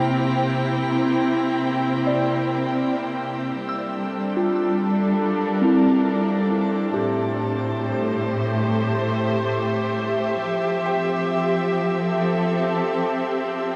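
Ambient and serene, this spacious fragment of a longer piece sets veiled, bowed con sordino strings up front holding sustained chords through the low-pass filter, while a pure FM synth bell with chorus, phaser and tape echo traces mellow arpeggios in the background and fades out from 3.6 seconds, and a glassy sine texture of drifting overtones glows through the first 3.6 seconds, all bathed in a wet shimmer reverb within a dark, warm production as the harmony moves from C through Gm9, Am7 and Fmaj9.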